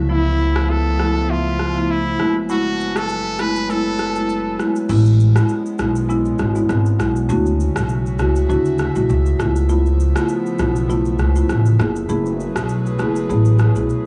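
Afrobeats at 100 BPM in A major with a joyful, breezy swing, cut from a longer piece: a woody pizzicato upright bass sits up front beside a vintage rosewood marimba and a soft, airy, chorused pad, while a brilliant, punchy trumpet with vibrato and scooped notes sings through an analog delay until 4.6 seconds and a deep house kit of crash, rim click and shaker, with a crunchy 12-bit sampler texture, drops its kick from 4.9 seconds onward, all captured in a dry, gritty cassette-tape recording.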